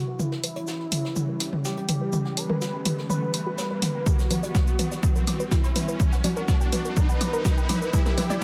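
Melodic techno in a dark, dramatic mood, this excerpt from a longer piece is one continuous build-up with a riser climbing underneath from 0.1 seconds. A bold, nasal unison lead with vibrato carries the melody through tape echo, while a lush, detuned pad holds sustained chords beneath it, shimmering with chorus and phaser. Both ride sidechain pumping, as does a soft, round pluck that spins arpeggios in the background through a dub echo, and all three sit under filter sweeps. Deep beneath them, a tight, saturated sequencer bass drives very quietly, and the chords move from C#dim to Em and then G. The drums run as a fill throughout: a punchy, tape-colored analog drum machine, up front, with congas, hi-hat, shaker and toms, blends with a natural jazz kit played with brushes, its thinned hats and snare sitting lower in the mix. A punchy electronic kick drum enters at 4.1 seconds and drops out at 8.0 seconds, all under a light reverb.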